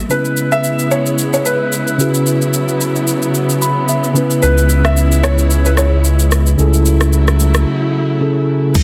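Soulful and late-night, this amapiano excerpt moves at 111 BPM in C# minor with a gentle 16th-note swing, as a mellow, clean tine electric piano sits up front over lush, bowed symphonic strings that pump under sidechain compression through C#m7 and F#9sus4/C# harmonies. A soft, felt-muted upright piano carries the melody through tape echo until 6.3 seconds, while an electronic afro-pop kit with a deep kick, rim click, shaker, crash and a softly clipped snare drives underneath, and the electric piano adds a fill from 3.3 seconds. A round, dark analog bass with a filter sweep holds C#2 from 4.4 seconds, and during the closing break, faint distant congas and a very quiet, percussive log drum bass arrive at the very end, all in light reverb and a dense, heavily limited master.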